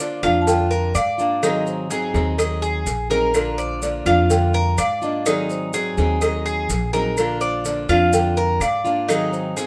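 A mellow, round marimba played with soft mallets carries the melody in this relaxed, warm Cuban son and guajira excerpt, over a fingerpicked plugged-in steel-string acoustic guitar and an up-front, metallic Cuban tres picking arpeggios on double strings, with a dark, thumpy pizzicato upright bass entering at 0.2 seconds alongside a tight, high-tuned cowbell, distant woody claves and grainy maracas, all set in a moderate studio reverb.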